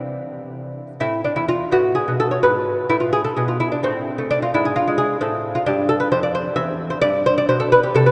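A solo lute, fingerpicked on gut double strings with some octave-doubled courses, carries this short baroque-style classical dance in 6/8 with a flowing, rubato feel. Its mellow, delicate tone sits up front, spanning from E2 to E5, while a long cathedral reverb gives the whole a serene, spacious glow. The harmony drifts through colourful chords, passing through a chordless moment at 3.8 seconds before settling back toward A minor at 5.2 seconds in this brief passage cut from a longer piece.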